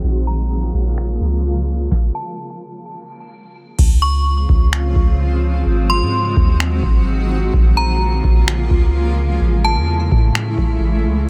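A booming analog drum machine with a deep kick, crisp snare, finger snaps and crash cymbal sits up front from 1.0 s in this dreamy, blissful half-time cloud-rap excerpt, riding a round, dark 808-style bass and a blurred, evolving granular pad that pumps with sidechain, while a bright, inharmonic FM bell rings through chorus and tape echo in a low-passed digital ambience.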